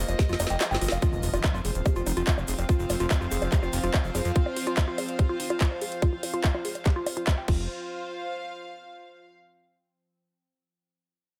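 A straight 4/4 psychedelic trance pulse at 144 BPM opens on a drop, with a tight, up-front electronic kick and a garage kit of woody snare, metallic hats, handclaps, bongos and crash filling in, a grainy egg shaker in the background and the kick dropping out from 0.6 to 1.0 seconds before a very quiet electronic impact lands. A fat, saturated, detuned analog sawtooth bass drives underneath while a dark, wave-folded woody pluck riff with chorus and dub echo runs through a filter sweep from 1.0 seconds. A morphing, phased wavetable pad and a soft, floating bowed string section pump behind it all, and the strings carry on alone after 7.7 seconds in this alien, psychedelic fragment cut from a longer piece.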